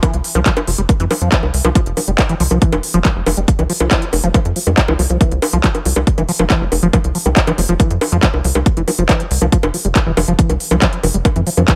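A straight 4/4 at 139 BPM anchors this alien, intense psychedelic trance excerpt, cut from a longer piece. A heavy, overdriven electronic kick sits up front, joined by a layered, produced techno kit of bongos, handclaps and smooth hi-hats that is also overdriven and prominent. Underneath, a tight sequencer bass spans F1 to F2, its punchy, driving sawtooth and square-wave tone shaped by a filter pluck and a moving notch, with a fast attack that decays into a mellow tone. Above it, a squelchy, resonant liquid acid bass riffs between E3 and G3 through phaser, sidechain pumping and tape echo, with a filter sweep running across the whole 11.8 seconds. The harmony rests on F5, and a digital ambience frames the mix.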